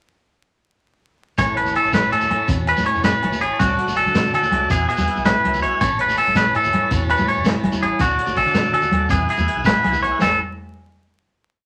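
Sunny and joyful, this short highlife guitar band piece moves at 109 BPM in a rolling 12/8 in A major, with a bright, twangy electric guitar up front repeating a clean, compressed arpeggio ostinato while a boxy acoustic guitar plays rolling fingerstyle arpeggios and a tonewheel organ holds a smooth sustained pad through a slow rotary speaker in the background. A round, dark fingered bass plays a syncopated riff beneath a vintage drum kit with a punchy kick, dark cymbals and a rolled-off top, joined by ringing close congas, a grainy shekere and a distant agogo bell time line. The groove cycles through Aadd9, D and Eadd9 from 1.4 seconds, settling on a final Aadd9 chord at 10.2 seconds, all in a wet studio reverb with a layer of vinyl crackle.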